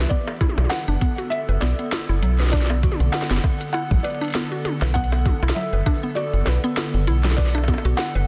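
Set in light digital ambience with a dense, heavily limited modern master, this melancholic, glitchy IDM fragment at 99 BPM in B minor rests on a Bm7 chord, where a warbling, nostalgic pad with phaser and sidechain pumping holds sustained chords, a woody, nasal mallet-like pluck with 12-bit sampler grit and tape echo runs arpeggios, a metallic, up-front FM bass with tube saturation anchors the low end, a softly swung organic electronic kit of bongos, crisp hats, woody snare and toms pairs with a soft electronic kick re-recorded in a small room, and from 0.1 seconds a felt-muted upright piano with audible action noise sings an intimate, dark melody through delay and shimmer reverb.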